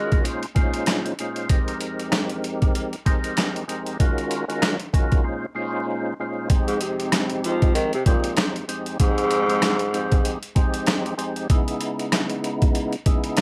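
A swung boom-bap groove at 96 BPM drives this gritty, tough hip-hop cut, its compressed sampler-style kit pairing a thumpy kick and medium-tuned snare with hi-hat and rim click, re-recorded in a large room. A fat, lightly overdriven tonewheel organ with key click, chorus vibrato and a slow rotary speaker carries minor eleventh and ninth chords throughout, settling into F minor at 6.5 s after a break from 5.2 s. A raspy, growling tenor saxophone with light vibrato and scooped notes sounds briefly at the very start, then returns for a jazz-style solo line from 6.7 to 10.4 s, all under light reverb and vinyl crackle.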